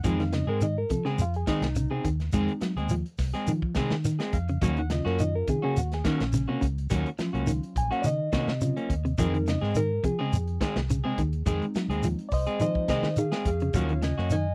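Afrobeat with a funky, intense drive, this short cut from a longer piece features a reedy, clean electric piano soloing through a phaser over shifting minor-seventh chords, while a gritty, saturated breakbeat kit with a tight kick and rolled-off top and a grainy, mellow shekere keep time. A round, dark fingered bass anchors the groove as two slightly broken-up electric guitars fill in, one with picked stabs and the other, up front, with fingered arpeggios. The sound is a dry, close 1970s-style studio recording with light reverb.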